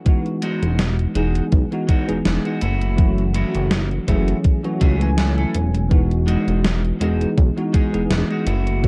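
Vaporwave at 82 BPM in 4/4 with a light 16th-note swing, nostalgic and hazy, where a bell-like tine electric piano wrapped in ensemble chorus and tape echo moves from Emaj9 to F#m7 and back over a thumpy, up-front electronic kick and a gated 80s drum machine's hi-hat and gated-reverb snare, joined at 0.4 seconds by a twangy, slightly broken-up electric guitar riff with lush chorus and tape echo and at 0.6 seconds by a glossy, evolving chorused synth bass, all set in dark digital ambience with a warm cassette-tape sheen in this excerpt from a longer piece.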